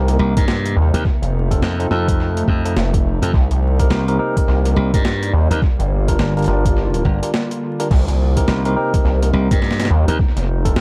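A dry, echo-heavy mix dusted with vinyl crackle frames this funky, playful slice of glitch hop, cut from a longer piece and riding a swung sixteenth-note feel. Up front, a gritty, saturated synth bass with a sawtooth bite, oscillator sync and a resonant filter pluck carries the low end, joined at 0.2 seconds by a bright, punchy electric slap bass. The drums are sampler-style and pitched down: an overdriven, thumpy electronic kick comes in at 0.4 seconds, while a boom bap kit with a high-tuned snare, hi-hat and crash cymbal is overdriven, treated with dub echo and re-recorded in a large room. A clean tine electric piano plays stabs through built-in speakers, pumping from sidechain and trailing dub echo, over a very quiet, warbling, nostalgic pad of detuned square, triangle and sawtooth tones with chorus and phaser. The harmony cycles through Cm7, F7 and Gm7, and a short break at 7.3 seconds interrupts the groove before it returns to Cm7.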